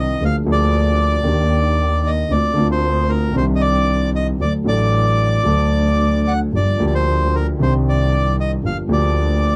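Tango with a sultry, melancholic, rubato feel, where an up-front, reedy bandoneon carries the melody over a dark, intimate grand piano with audible action noise and a bowed double bass whose vibrato sounds focused yet distant, all captured in a dry, close 1970s-style studio sound in this brief cut from a longer piece.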